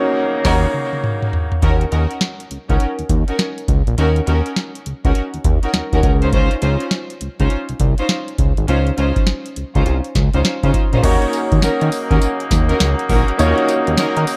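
New jack swing R&B at 102 BPM in Eb dorian, this punchy, bouncy excerpt from a longer piece rides a swung 16th-note feel over a dark production with light reverb. It opens with a band accent as the booming analog drum machine enters at 0.4 seconds with a fill, its deep kick, tonal snare, metallic hats, tambourine, toms and crash sitting up front. A fat, detuned sawtooth bass joins at 0.5 seconds, thick and sustained with a filter sweep, anchoring the low end from Ab1 to Eb3. A polished, present baby grand piano and a distant, roomy woodwind section holding soft-attack chords appear only in the opening moments and return from 11.0 seconds, framing the middle stretch. Throughout, a lush bowed string section supplies focused, distant stabs with vibrato and digital delay, while the harmony moves from Ebm7 to Dbmaj9 and back to Ebm7.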